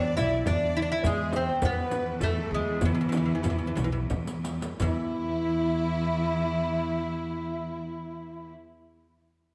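Persian modal ensemble music in E dastgah homayun, melancholic and hypnotic in 3/4 at 83-104 BPM, where a delicate, fingerpicked gut-string lute carries the melody up front over an airy, distant low ney and a lush, bowed violin section on second lines, a woody pizzicato upright bass, and a rich cello drone in the background, while a very quiet tight tombak, a close frame drum and a band-limited riq with dark, vintage jingles play from 0.2 s to 5.1 s. The music slows down from 1.0 s to 4.8 s, with a drum fill from 4.1 s to 4.8 s, all set in a moderate concert hall reverb.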